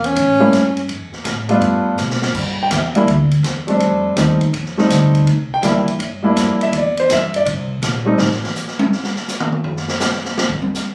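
Small-group swing and bop jazz in C mixolydian, this short excerpt moves at a brisk 164 BPM in 4/4 with a swing feel on the eighth notes, yet the mood stays sophisticated and relaxed. A close-miked tenor saxophone with soft attack and vibrato opens up front, sounding only a single Db4 before falling silent at 0.9 s, while the upright bass plays its woody, growly pizzicato line through the low register until 8.4 s. A grand piano with short sustain comps from 0.4 s, moving through changes such as A7b9, Dm, G7, a rootless C, F7 and C7. The punchy, acoustic drum kit, with its medium-tuned snare, ride, hi-hat, crash and toms, plays a fill before the second section at 2.4 s and then takes a solo from 8.2 s to the end. Everything sits in moderate club-style reverb, captured on a phone recording made in the room.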